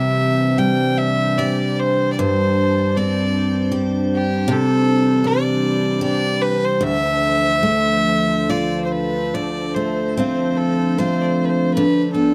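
Haunting and mournful, this short excerpt of a Celtic slow air moves in a rubato triple metre, drawn from a longer piece. A bright, biting fiddle carries the melody up front, its nasal, earthy tone shaded with light vibrato from a single bowed player. Beneath it, a picked steel-string acoustic guitar sits close and present, giving a warm accompaniment that spans from low bass notes into the middle register. An icy glass pad holds sustained chords further back, its crystalline, airy sound softened by chorus and its own reverb, with slow attack and long release. The harmony drifts from Cadd9 and Gsus4 toward Dm, and a new section begins at 9.4 seconds on Dm7 before settling on G/D. Otherwise the recording is dry and intimate, with the close feel of a 1970s studio.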